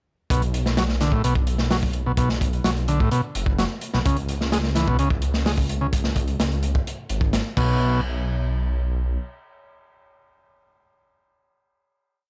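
Energetic and swaggering, this short breakbeat piece in B dorian at 128 BPM drives a buzzy vintage combo organ riff with sampler grit and analog delay over a deep, rumbling detuned saw bass with long gliding notes and a crunchy, saturated looped drum break with dark cymbals and a tight kick, all dry and gritty, as the drop moves from Bm to C#5 before the drums stop at 7.7 seconds, the organ follows at 8.0 seconds, and the bass rings out alone to 9.2 seconds.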